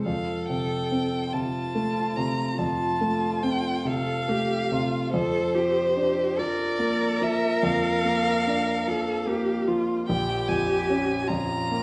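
A slow, rubato pulse in 12/8 at 48 BPM, counted in dotted quarters, shapes this elegiac, yearning slow movement for piano trio in F major, cut from a longer classical piece. The clear grand piano carries the accompaniment from the first moment, its intimate, natural tone sitting up front with audible action noise. The violin enters at 0.1 s with the melody, up front and close, singing with vibrato, portamento and a soft bowed attack in a warm, expressive voice. Beneath it the rich cello adds a second line, also bowed with vibrato, portamento and a gentle attack. The harmony moves from F to Bb69/F at 5.1 s, then darkens to Bbm at 10.1 s. A moderate recital hall reverb, as in a church or concert hall, surrounds the trio with a natural sense of space.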